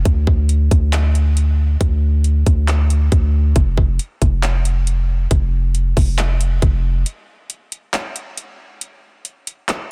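Atmospheric cloud-rap hip hop in D minor, this short piece drifts with an ethereal, melancholic mood at 137 BPM in a half-time 4/4 feel, tuned slightly sharp to A4 = 441 Hz. A deep, boomy 808-style bass sits up front from the start, its sine tone mellow with a fast attack and a decaying tail, ranging from F1 to D2 until it drops out at 7.0 seconds. An electronic trap kit enters at 0.1 seconds with handclaps, metallic hi-hats and a hard-clipped kick, its produced sound re-recorded in a small room and placed close to the listener. From 7.1 seconds a break lets the drums carry on alone until they stop at 9.8 seconds. The mix is dry, with little reverb, and the master is dense and heavily limited in a modern style, cut from a longer piece.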